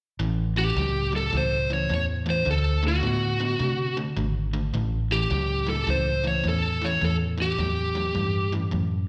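Rollicking and soulful, this brief excerpt from a longer electric blues shuffle swings through A7 and D7 as an overdriven semi-hollow guitar plays a bright, slapback-echoed riff over a dark, round, foam-muted electric bass, while an up-front lead guitar through a small cranked amp carries the melody from 0.6 seconds with a gritty, slapback-tinged tone, all captured live through a venue's PA with a recital hall reverb.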